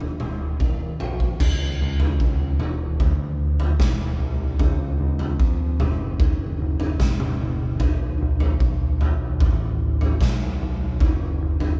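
A raw garage drum kit leads this brief psychedelic rock excerpt, its punchy kick, medium-tuned snare, toms and crash cymbal sounding gritty, saturated and warm in a bright stone room that pumps around them, with a rolled-off top and the kit sitting up front. Beneath it, an overdriven picked electric bass runs throughout, dark and round with a direct tone, moving between E1 and E#2. The mood is trippy and mysterious, set in a straight 4/4 at 75 BPM, with the tuning sitting slightly below standard at A4 = 435 Hz. A drum fill from 0.6 to 1.4 seconds closes the short opening passage and carries the band into the longer section that follows. The two players sound as if they are performing live together in one room, touched by light reverb.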